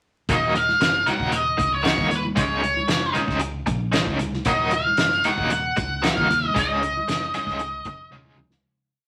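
An up-front, fuzz-drenched octave lead guitar with wah spins a dark, motif-based melody over a bright, double-tracked semi-hollow guitar's short syncopated tremolo chords, a round fingered bass riff, a soft-mallet kit with a fat snare and boomy kick, and loose background congas entering at 0.7 seconds, in a hypnotic, dark psychedelic rock piece at 115 BPM in Eb minor, wrapped in small-room reverb and vinyl crackle, fading out from 6.6 seconds before a closing drum fill at 8.1 seconds.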